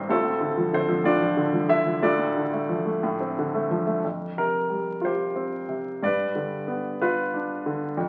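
A warm grand piano plays alone and up front, its short sustain giving each chord a clipped, intimate quality as it ranges from deep bass to the upper middle register. This is a lyrical classical solo in 6/8, played with rubato so the beats stretch and lean unevenly, lending a wistful, dark mood. The brief fragment, cut from a longer piece, opens on a minor seventh harmony before shifting at 4.0 seconds to an open suspended chord and then to a dominant seventh at 6.0 seconds. The sound carries the wet bloom of a recital hall, and the whole is heard through the crackle of a very old 78 rpm record, giving it a faded, aged character.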